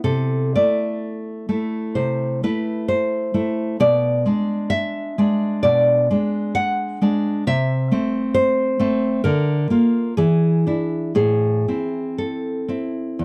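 The rhythm moves with uneven beats and free rubato around 65 BPM in 4/4, giving this short cut from a longer romantic piece a breathing, unhurried pulse. A solo nylon-string guitar carries everything, fingerpicked and placed up front, with a full-bodied, deep classical tone that ranges from E2 up to F#5. The mood is passionate yet melancholic, rooted in A minor and opening on Am/C before darkening to G#dim/B at 3.8 seconds. After returning to Am/C, the harmony leans through Bb/D and E7 before settling on Am at 11.1 seconds. A moderate booth ambience with a brief decay keeps the sound close and intimate across the 13.2 seconds.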